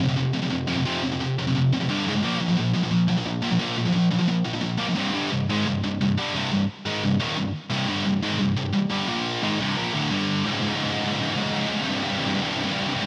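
A dry, rough home-demo sound puts a lone scooped, high-gain electric guitar up front, double-tracked and bright, its picked parts soaked in distortion and digital delay. This is an epic, relentless metal fragment in C minor at 175 BPM in straight 4/4, cut from a longer piece and ranging from C2 to Bb3. Power chords on F, G, Db and Bb give way to a C minor chord at 5.0 seconds, and a fresh section from 10.4 seconds drives through Db5 before settling on C5.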